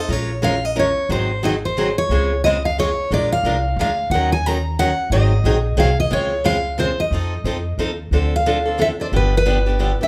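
A full-bodied jumbo steel-string guitar carries a bittersweet, virtuosic melody over a boxy parlour guitar's accompaniment, finger squeak and all, while a woody, thumpy pizzicato upright bass on gut strings joins at 0.1 seconds in this swinging jazz manouche waltz excerpt, played live in one room with light reverb, its minor-key progression turning to Dm7 and G7 at 8.1 seconds.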